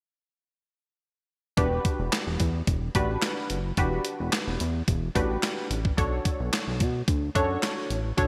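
A straight 4/4 groove at 109 BPM drives this slick, funky early-eighties boogie funk fragment in E minor, cut from a longer piece, with a clean 12-bit drum machine laying down a thumpy kick, medium-tuned snare, hi-hat and handclaps bathed in gated reverb, all entering together with the bass and keys at 1.6 seconds. A glossy, chorused synth bass blending pulse, sawtooth and triangle tones with ring modulation and a plucky filter sits up front beneath a punchy, detuned polysynth comp, with chords moving from Em9 to Bm9 at 6.0 seconds. A lush hall reverb and bright 1980s-style digital sheen give the short passage its polished gleam.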